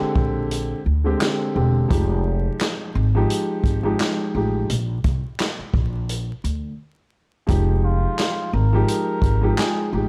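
Moody and gritty, this boom-bap hip-hop excerpt rides a swung 16th-note groove in 4/4, cut from a longer piece. A dark, mellow concert grand piano carries the accompaniment through Bb13 and Fm9 chords, its deep bass softened by a cassette-tape character and filtering that trims both ends of its tone. Beneath it, a woody pizzicato upright bass with steel strings sits up front, thickened by transformer saturation. A vintage acoustic kit of punchy kick, medium-tuned snare, hi-hat and handclaps enters at 0.2 seconds, its top rolled off to keep the beat round and close. At 7.8 seconds a cup-muted trumpet slips in for a brief, breathy, veiled jazz solo with light vibrato and tape echo, all set in a small, dry room with gritty hardware grain and vinyl crackle.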